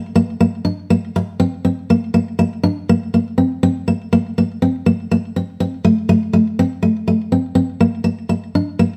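A full-bodied, up-front fingerpicked steel-string acoustic guitar plays solo throughout this short, joyful highlife fragment, moving at a straight 122 BPM in 4/4, tuned slightly low to A4 = 439 Hz and set in a moderate studio reverb.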